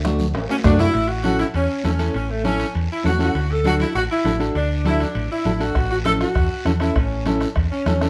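A festive, joyful cumbia excerpt at 200 BPM in a straight 4/4, with an early drum fill from 0.2 to 0.9 seconds before settling into an A major groove that moves between D and A chords. An up-front, clear saxophone section carries the melody with vibrato in a jazz-style ensemble sound, over a dark, clean semi-hollow electric guitar accompaniment and a round, punchy fingered electric bass. Percussion blends a close, dry bombo with a soft beater that drops out and returns at 5.8 seconds, ringing congas and vintage-toned cowbell and timbales in the background, and a raspy guiro, all set in light reverb.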